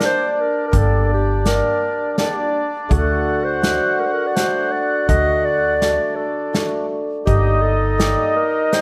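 A mellow, reedy accordion second line, a shimmering hammered dulcimer and an unplugged drum kit with a punchy kick, played with bundle sticks, open this bittersweet, soulful klezmer excerpt in 3/4 at 82 BPM in G harmonic minor. They are joined almost at once by a dark, classical-style clarinet melody and, from 0.7 seconds, a woody, thumpy pizzicato upright bass on gut strings, as the harmony moves from G minor to D and back under light reverb and close, detailed microphones.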